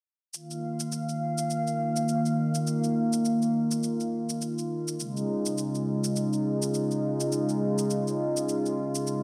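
A 16th-note swing of 58% gives this organic downtempo piece a loose, rolling feel at 103 BPM in 4/4, tuned slightly flat to A4 = 436 Hz. The groove comes from a quiet, electronic shaker, layered and overdriven, that sits low in the mix from 0.3 to 9.2 s. Up front, a vintage analog pad holds sustained chords across the same span, spanning Db3 to F5. Its detuned sawtooth and sine tones are wave-folded and treated with chorus, giving a smooth, warbling sound with a soft attack. The harmony rests on Ebsus2 before settling onto Db at 5.0 s, and a lush hall reverb with a 2.9-second decay surrounds this earthy, mystical passage cut from a longer piece.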